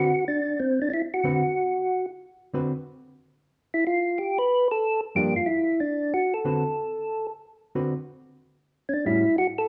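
Swinging and soulful, this short jazz excerpt moves at a brisk 184 BPM in 4/4 with a swing feel, set in D mixolydian. A percussive tonewheel organ carries the melody throughout, its mellow, round tone sitting up front with third-harmonic percussion and the gentle motion of a slow rotary speaker. A hollow-body electric jazz guitar provides fingered accompaniment, dark and clean, dropping out at 2.7 seconds and returning at 5.2 seconds. The harmony moves from D13 through a brief N.C. passage at 3.5 seconds, then on to Gm7, D6 and A6. The band plays live in one room, with a moderate large-studio reverb lending a natural sense of space.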